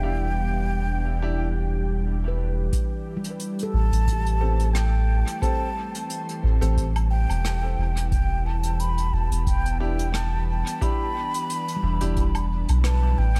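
Soaked in studio reverb, with a round, up-front sub bass anchoring the low end, this meditative ambient dub piece feels spacious and unhurried, its sixteenths lightly swung. A hollow concert flute with airy vibrato carries the melody through dub echo, floating over a calm, organ-like pad whose detuned sine tones are thickened by ensemble chorus and their own reverb. A clear, woody upright piano adds filtered stabs that also trail off in echo. A dark, ringing handpan sits in the background with soft fingertip arpeggios and a filter sweep, first entering at 2.3 seconds and returning at 10.1 seconds. At 2.7 seconds a dry, tape-warm electronic kick arrives with a polished brushed kit, whose hi-hat, rim clicks and woodblock scatter through dub echo, as the harmony moves from Em7 to Am7 and back to Em7 in this excerpt from a longer piece.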